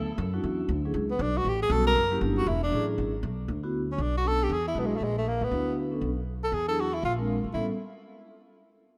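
A swinging, sophisticated jazz snippet, cut from a longer piece, moves at a brisk clip with a swing feel in four. A dark, ringing vibraphone struck with medium mallets and played with its motor off lays down smooth, metallic chords from the start, while a woody, growly upright bass, plucked on steel strings, sits thumpy and up front underneath. At 1.1 seconds a breathy tenor saxophone enters as the soloist, its clear tone carrying vibrato, soft attacks and scooped notes in a jazz style. The harmony is rich with extended and altered chords, including suspended, ninth and thirteenth colours, and a brief moment around 6.0 seconds where the chords drop out. The rough home demo mix has a light studio reverb.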